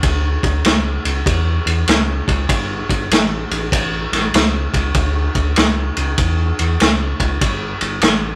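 Raunchy and driving, this short blues rock power-trio and southern rock fragment swings at 98 BPM in A mixolydian, with a gritty, saturated vintage kit of tight kick, medium-tuned snare and dark ride cymbal sitting up front beside a deep, round analog bass whose sawtooth and sine tones, shaded with ring modulation, sustain low until the drums stop at 8.2 seconds and the bass at 8.4, all in a rough rehearsal-room sound with light reverb.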